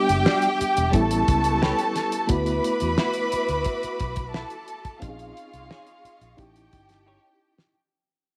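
A warm, lush violin section sits up front with smooth, even vibrato, carrying a second line over this short excerpt of 1970s-style soul at 88 BPM in a straight 4/4, its mood bittersweet and silky. Beneath it, a reedy, slightly out-of-tune electric piano shimmers with a fast tremolo through its built-in speakers, while a rich, focused string section holds sustained chords in the background. A dark, foam-muted fingered bass gives round, punchy support, and a dry, damped drum kit with a fat snare, tight kick and rolled-off top keeps time, closing with a fill from 7.1 seconds. A clean, compressed semi-hollow guitar picks a riff through an ensemble chorus, entering at 0.3 seconds. The harmony drifts from Em9 through A9 and D69 to Bbm11 and A7#11 in a small room ambience, all under a fade-out.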